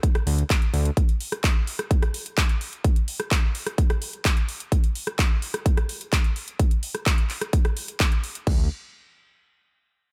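Anthemic and powerful, this short cut from a longer festival progressive house track drives at 128 BPM in a straight 4/4. A punchy, layered electronic kick sits up front and plays from the start until 8.6 seconds, alongside a big-room dance kit of handclaps, rim clicks, metallic hi-hats and crash cymbal. A fat, detuned sawtooth bass on D2 appears only briefly, at 0.3 seconds and again around 8.5 seconds, its thick, sustained tone shaped by a filter sweep and pumping through sidechain compression. The drums and bass all have a polished, produced sheen, set inside a digital ambience. After the opening section, a new passage begins at 8.5 seconds as the drums fall away.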